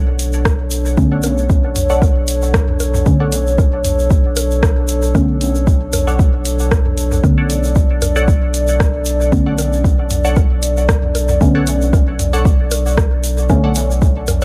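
Lightly swung sixteenths drive this hazy, cavernous dub techno excerpt, its overdriven electronic kick sitting up front and deep. The deep house kit adds hi-hat and rim click, gritty with overdrive and trailing dub echo. A grainy egg shaker joins, while dry, tape-tinged electronic bongos and toms sit in the background. A round sine sub bass holds one low note underneath with sidechain pumping, while a moody, nasal analog pad sustains dark detuned chords with a slow attack, subtle chorus and a long release. From about 1.0 seconds, a soft, mellow chord stab blends triangle and sawtooth tones with ring modulation, chorus, phaser and a cassette-tape tint before decaying into dub echoes. Just after it, a muted yet bright filtered dub stab plays a short-decaying riff through a filter sweep, phaser and tape coloring. The mix stays close and fairly dry, with little reverb.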